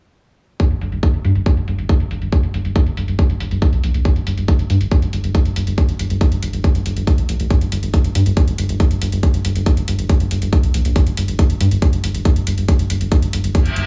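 Metallic, filtered electronic hi-hats and a tight, up-front layered kick open this alien, psychedelic trance fragment in G minor at 139 BPM, joined at 0.7 s by a round, detuned, dark analog bass with tube saturation, all in a dry, heavily compressed radio-like sound until an electronic reverse cymbal enters at 13.6 s.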